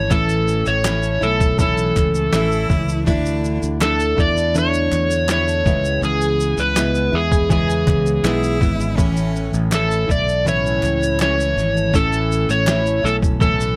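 An up-front, overdriven slide guitar carries the melody in this easy-going, sunny acoustic pop excerpt in A major at 81 BPM, over a double-tracked, full-bodied nylon-string guitar with audible finger squeak, a very quiet jumbo steel-string guitar picking arpeggios, and a growly, punchy fingered electric bass. A muffled, pitched-down sampler-style trip hop kit with a thumpy kick, medium-tuned snare and shaker is joined by crisp group handclaps in the background, while a clear, bowed cello with vibrato adds brief second lines at 2.3 and 8.2 seconds. The chords move from A through Dsus2 and C#m7 back to A, all in a light reverb.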